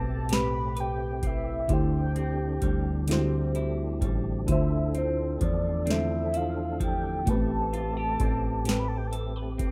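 A rough home-demo sound with digital ambience frames this short, yearning and sultry slice of slow six-eight R&B cut from a longer piece. A velvety synth lead carries the melody in a dark, smooth tone with chorus and tremolo, while a clean, picked semi-hollow electric guitar plays a second line through spring reverb. A mellow FM electric piano supplies the accompaniment with a soft, warbling, vintage character and its own chorus. Behind them, a fat, lightly overdriven tonewheel organ holds sustained chords with key click, chorus vibrato and a fast rotary speaker, sitting in the background. Up front, a deep, round dub bass played with the fingers anchors the low end, and a booming analog drum machine enters at 0.3 seconds with a deep kick, crisp snare and metallic hi-hats, overdriven and re-recorded in a small room. The chords move from Am9 through D9sus4 and Dm9 before returning to Am9.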